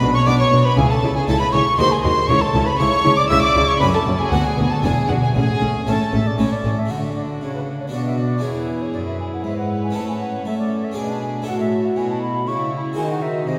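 Steeped in the long, wet reverb of a church, this brilliant, lively baroque-style concerto movement in 3/4 features an airy, bright wooden flute sharing the melody with a rich first violin section, with a close second violin section on the second line, a distant, dark viola section and a full, dry, plucked harpsichord in accompaniment, and a smooth-topped cello section on the bass, all strings bowed with light vibrato and a reedy gut-string period tone, while a double bass section joins the low end only until 6.7 seconds.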